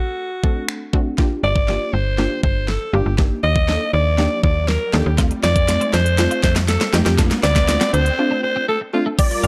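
A straight 4/4 pulse at 120 BPM drives this confident, energetic dance-pop excerpt in G minor, where a raspy, vibrato-laden alto saxophone with analog delay leads up front over lush, detuned unison plucks and a layered electronic drum kit with knocking kick, fat snare and crisp hats, joined at 1.4 seconds by a snappy, metallic slap-like FM bass, the bass and plucks both pumping with sidechain, while a very quiet riser sits beneath, a clean, picked twelve-string electric guitar riff slips in behind at 5.2 seconds, and after a brief break a huge, bright supersaw chord with phaser and a shimmering chorused pulse-width pad arrive at 9.2 seconds, captured in a dry, gritty recording with digital ambience.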